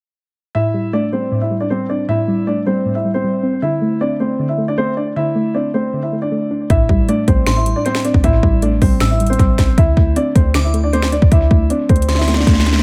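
Over a half-time trap pulse at 156 BPM in A minor, this dark, brooding hip hop excerpt opens with a mellow concert grand piano melody trailed by analog delay and a soft, round chorused pluck alternating Am7 and D5, until a boomy, clean 808-style bass and an up-front trap kit of hard-clipped kick, sharp snare, metallic hats and finger snaps arrive at 6.7 seconds, joined by a faint, crystalline FM bell line at 7.5 seconds, all in a dry, echo-heavy mix that closes on a drum fill.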